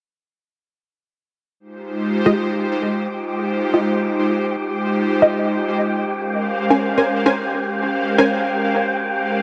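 A lush, hall-soaked haze opens this atmospheric, nostalgic drum and bass fragment, where an airy, warbling pad holds chorused chords up front from 1.7 seconds, a dark wind-like noise texture drifts in through its own reverb, and muted, deep dub chord stabs, phased and tape-worn with echo trails, move under a filter sweep as the harmony shifts from Fm9 to Bbm9 at 6.1 seconds.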